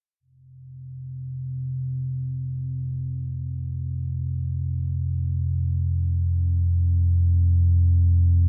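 Vast and ominous, this ambient excerpt in free time is a lone deep rumbling drone, dark and detuned with a slow attack and long release, that enters at 0.7 seconds and sustains an F5 chord up front in a cavernous cathedral reverb.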